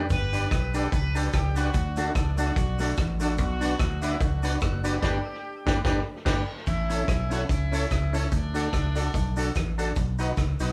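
A round, up-front fingered electric bass anchors this joyful, cheerful ska passage at 146 BPM in A mixolydian, with a gritty, saturated vintage drum kit, a bright semi-hollow electric guitar accompaniment, mellow tonewheel organ stabs swirling through chorus vibrato and fast rotary speaker in the background, a tight, punchy horn section carrying the melody, and a faint grainy cabasa, all in a live-room studio reverb, with a band accent hitting from 5.0 to 6.7 seconds.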